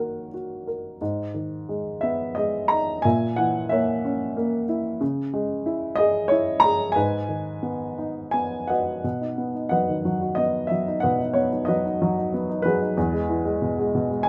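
In a rubato triple metre, this sunny, relaxed fragment of a lyrical classical solo piano piece features a dark, woody upright piano with short sustain, placed up front in light reverb over a faint mains hum, moving from minor-key harmonies into a brighter major passage at 9.0 seconds before the cut at 14.3 seconds.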